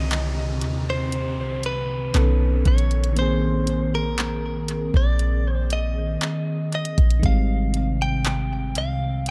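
Contemporary R&B at a slow 59 BPM in 4/4, moody and late-night, cut from a longer piece and moving through Cm9, B9, Bb9sus4 and Abmaj7. A clean, direct-recorded electric guitar carries the picked, compressed melody with tape echo over a glassy, bell-like FM electric piano with chorus and echo, a hollow, flute-like pad under ensemble chorus, and a deep, boomy 808-style bass sitting up front. A soft electronic kit with handclaps, hi-hat and kick keeps time, while a background downlifter ends at 7.2 seconds in a dry, echo-heavy mix.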